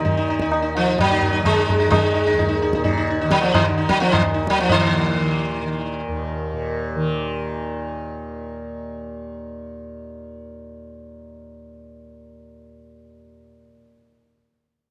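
Meditative and solemn, this brief cut from a longer Hindustani classical piece moves in a straight three-beat metre and gathers pace as it goes. A plectrum-plucked sitar carries the melody up front, its round, buzzing tone shimmering with sympathetic strings and touched by a slapback echo, before it falls silent at 6.0 seconds. Beneath it, a mellow, softly plucked tanpura holds a buzzing drone that sustains alone until 14.1 seconds. Low-tuned tabla ring out close and dry, stopping at 4.9 seconds, just after the music passes into a new section. A moderate echo chamber reverb and studio ambience lend the whole a sense of space.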